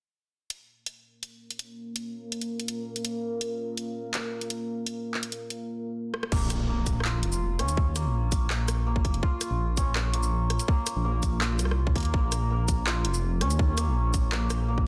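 A half-time 4/4 pulse at 165 BPM drives this heavy, dark drum and bass piece in Bb minor, where an overdriven, up-front kit of bright hats, handclaps, rim clicks, shaker and crash enters at 0.5 seconds and is joined at 1.7 seconds by a deep, moody, chorused pad of slow-attack sustained chords pumped by the sidechain, until a drum fill at 6.1 seconds tips into the drop at 6.3 seconds, bringing a tight overdriven kick, a rumbling, beating detuned saw bass, shimmering hammered santur arpeggios trailed by tape echo and a faint background impact, all in a dense, heavily limited mix.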